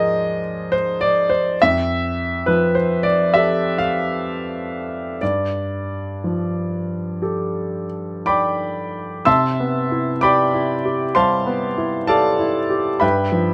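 A clear grand piano plays alone in this brief impressionist classical excerpt, which drifts in a dreamy, hazy mood at a rubato 55-72 BPM in 4/4 and C major. Heard intimately and up front, the polished tone carries long sustain and audible action noise in light reverb, spanning F2 to E6 as the harmony moves through Ab69, Fmaj9 and Gsus2. At 9.3 seconds a new section opens on Cmaj7, reaching G13 shortly before the music breaks off at 13.5 seconds.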